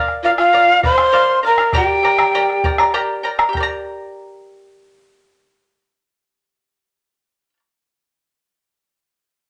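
A bright, shimmering charango opens this melancholic yet festive Andean folk excerpt in 3/4, its fingerpicked double strings sitting up front. A breathy, expressive cane quena carries the melody with vibrato and a crisp, chiffy attack, while a wooden pan flute adds an unsteady second line beneath it, both playing until 2.9 seconds as a round, dry bombo sounds until 3.8 seconds. The charango then carries on by itself until 7.6 seconds, all in a light reverb over a move from Bb to G minor.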